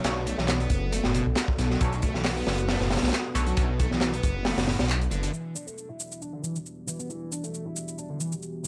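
Energetic and raw, this breakbeat excerpt drives along at 136 BPM in E minor with a slight swing on the sixteenths, moving from a Bm9 chord to Em9 at 5.3 seconds. A crunchy, up-front breakbeat kit with a high-tuned snare, tight kick and saturated, rolled-off top leads the groove alongside a thick, menacing detuned saw bass whose beating tone sits forward in the mix; both play until 5.3 seconds, with the kick dropping out briefly beforehand and the band hitting an accent at 4.9 seconds. Layered electronic handclaps and shaker, re-recorded in a small room, join at 0.5 seconds and carry on to the end. A sludgy, double-tracked electric guitar riff, overdriven with tube saturation, 12-bit sampler grit and a low-pass filter, runs throughout, while a nasal, band-passed chord stab with ring modulation, phaser and dub echo punctuates the opening until 3.7 seconds. Beneath it all, a deep, moody analog pad holds sustained chords in the background, its chorus and sidechain pumping adding motion under light reverb.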